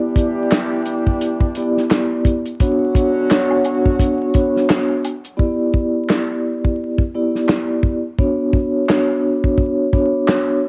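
A home cassette recording with vinyl crackle and small-room ambience carries this tough, reflective boom-bap hip-hop fragment on swung sixteenths, where a dark, ringing vibraphone played with soft mallets sits up front beside an acoustic soul drum kit with a tight kick, medium-tuned snare, handclaps and a rolled-off top, while a smooth jazz-style horn section doubled in octaves adds mellow vibrato stabs and a close, dry egg shaker and woodblock sit in the background until both stop by 5.2 seconds, with the hi-hats muted from 5.4 seconds.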